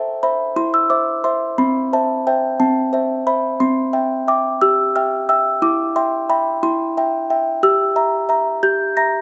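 A solo music box opens at 0.0 s, its delicate, tinkling plucked tones coming from a large box that gives them a mellow, soft body. This is a classical lullaby in 6/8 at 60 BPM, counted in dotted quarters, with a fragile, wistful mood. The instrument sits up front, caught by close, detailed microphones with light reverb, and its slightly out-of-tune pitch adds to its charm. Across a range from C4 to Bb6, the harmony moves from A minor through Am/C to C and C/E, then arrives at Edim/G near 7.6 s. The 9.2-second passage is cut from a longer piece.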